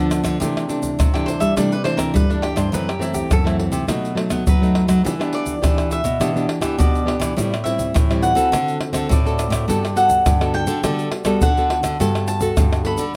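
Close, detailed microphones sit inside a moderate large-studio reverb, giving this sunny, playful samba and choro passage in G major at 104 BPM an intimate yet roomy sound. A full-bodied, fingerpicked nylon-string guitar supplies the chords from C69 through F#m7b5, B7 and Em7 to a closing Gmaj9, while a second nylon-string guitar carries the bass up front, and a close, dry kit of tube shaker, pandeiro, tamborim and tight surdo, played with soft hands, joins at 0.1 seconds. From 1.1 seconds a crisp, picked cavaquinho takes the melody as a solo line, and the passage is cut from a longer piece.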